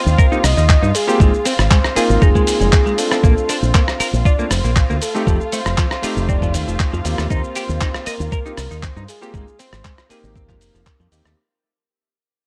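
A short, groovy and sunny nu-disco excerpt at 118 BPM in 4/4 with a straight feel, tuned to A4 = 439 Hz, opens at once with a soft, round, octave-layered synth lead carrying the melody over an electric grand piano's vintage chords with a clangy low end. A muted string section sits veiled and dark in the background, bowed con sordino with vibrato and a soft attack, breathing to sidechain pumping. Within the first 0.2 seconds the groove is fully in place: a thumpy, up-front electronic kick, a gritty, compressed soul sampler-style kit of handclaps, hi-hat, rim click and shaker, a tube-saturated fingered bass pushed forward through an envelope filter, and a bright, twangy clean electric guitar riff coloured by analog chorus. The lead's tape echo and chorus add shimmer to its sustained, full tone as the harmony moves through Eb6, Ab69, Bbmaj9 and F7, returning to Eb6 and Ab69 before closing on F7sus4. 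The whole passage plays as a drop, with a fade-out starting at 3.2 seconds and running to the end at 11.4 seconds. The mix is dry and gritty, with the grainy character of a hardware recording on cassette tape.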